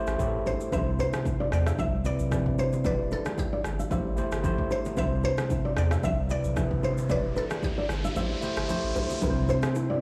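Afrobeats at 113 BPM in C major, sunny and joyful, with a lightly swung sixteenth-note feel in this short cut from a longer piece. A woody, round mallet-like synth pluck carries the melody with chorus and tape echo over a clean tine electric piano played up front through a combo amp, while a deep, thick saturated sub bass anchors the low end. The electronic afro-pop kit brings a deep kick, rim click and shaker with a tape-warm, small-room character and soft clipping on the snare, joined in the background by bright, close congas and bongos and a dark, thumb-plucked nylon-string guitar riff with tape echo. The harmony cycles through Am7, Cmaj7 and Em7, and an electronic riser builds from 6.4 seconds as the kick drops out at 8.2 seconds before the music lands on C at 9.2 seconds. A glassy, ethereal FM pad with ensemble chorus and sidechain pumping appears only at the very end, all within a blown-out, overdriven recording with light studio reverb.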